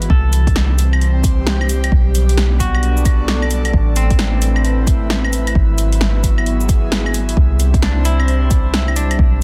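Future garage at 132 BPM with a swung 16th-note feel, this ghostly, rainy passage cut from a longer piece sets an airy, breathy pad with chorus and 12-bit sampler grit over a soft, round 808-style bass that pumps against an overdriven electronic kick and a deep house kit of punchy snare, metallic hi-hats, cabasa and claves, re-recorded in a large room, while a clean, twangy electric guitar with digital delay picks through a C, Gadd9/B, Amadd9, Eadd9/G# progression inside a dense, heavily limited master.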